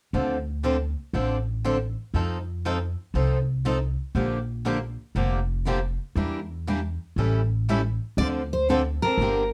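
A bright, concert-toned steel-string acoustic guitar melody enters at 8.2 seconds over two picked acoustic guitars, one warm dreadnought and one boxy swing-style with fresh strings, and a woody, thumpy gut-string upright bass, in this bittersweet, virtuosic D minor jazz manouche excerpt at 119 BPM with a swung feel, moving through Dm7, F7, Bb6, Em7b5 and A7 in a dark, moderate studio ambience.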